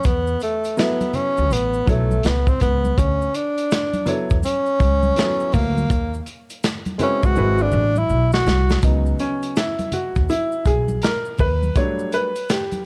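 Cool and mellow, this swung jazz-hop cut at 82 BPM opens with a breathy, subtoned tenor saxophone solo with light vibrato and scooped notes over a crunchy, gritty breakbeat kit, thumpy pizzicato upright bass, warm upright piano accompaniment, and bright, dry maracas and congas tucked in the background, until a drum fill at 7.4 seconds hands the lead to the woody, vintage upright piano for a solo at 8.8 seconds, all framed in a dark small-room sound.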